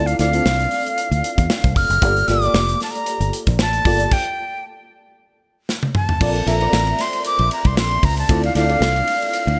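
A lightly swung sixteenth-note groove at 115 BPM in 4/4 drives this polished 1980s jazz-funk pop excerpt in G dorian, with a bittersweet, urban mood. A modern studio drum kit sits up front with a punchy kick, a medium-tuned snare, hi-hat, ride, crash and toms in an airy small room, while a fingered electric bass adds a foam-muted, warm and punchy low end. A bell-like FM electric piano provides sparkling chords with a fast attack and gentle decay, tremolo and ensemble chorus, moving from Dm9 to Gm9, then Bbmaj9 and back to Dm9. Over this, a close-miked concert flute carries the melody with a breathy, reedy tone, crisp attack and vibrato. A stop begins at 4.1 s, and a drum fill at 5.7 s leads the groove back in at 6.2 s, all within a bright digital 1980s-style production with light reverb.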